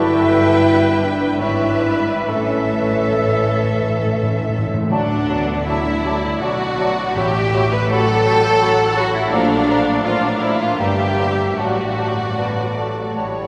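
Bathed in a wet cathedral reverb, this serene excerpt from a slow romantic orchestral movement in D major moves in rubato 3/4 at 66-86 BPM. A rich studio violin section carries the melody with soft-attack vibrato alongside bright flutes, a dark cor anglais and a distant, lush second violin section, while a focused viola section, mellow bassoon, warm French horn chords, a clear cello section and a smooth double bass section sit beneath, and very quiet calf-headed timpani enter with a fill at 2.3 seconds before stopping at 8.2 seconds.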